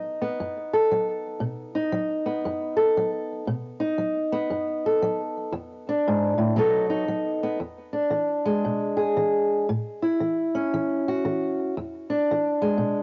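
Blues with a soulful, laid-back mood at 116 BPM in 4/4, swung on the eighths, played on a lone fingerpicked old ladder-braced acoustic guitar that sits up front and spans E2 to A4. The guitar's tone is dark and boxy with the woody sound of old strings, moving from B7 to E7 and back before a second section from 7.6 seconds passes through E7, A and E7 again. It is a 13-second excerpt of a home recording on cassette, with light reverb and a muffled top end.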